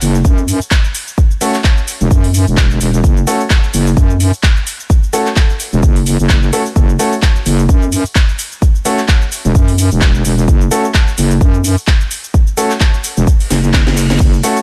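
Bouncy and swaggering, this bass house excerpt rides a swung groove built on a single minor chord. A heavy, saturated wobble bass sits up front from the start, its square-and-sine tone made resonant and mellow by chorus and overdrive, and it pumps with sidechain compression. The punchy, layered electronic kick drives the beat alongside a house kit of handclaps, cabasa, crash cymbal, metallic hi-hats and a cracking snare, all with a tape-tinged small-room ambience. A clear, natural grand piano enters with stabs at 1.4 seconds, also pumping and trailed by dub echo. Near the close, a reverse cymbal rises in the background at 13.4 seconds and a drum fill follows at 13.5 seconds, all in a dry, upfront mix.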